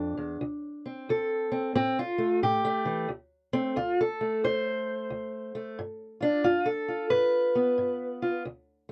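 A fingerpicked steel-string acoustic guitar carries this short acoustic country blues piece alone, its dark, boxy parlour tone sitting up front in the mix. The mood is gritty and soulful, with a loose swing in the eighth notes over a steady four-beat feel. The playing ranges from deep bass notes up into the middle register, moving through D5 and A5 chords before returning to D5 at 3.1 seconds and reaching a G7 at 5.8 seconds. That point at 3.1 seconds also opens a second section where the guitar takes a solo turn through to the close at 8.9 seconds. The sound is dry and close, like a 1970s studio session with little room ambience, and the clip is cut from a longer performance.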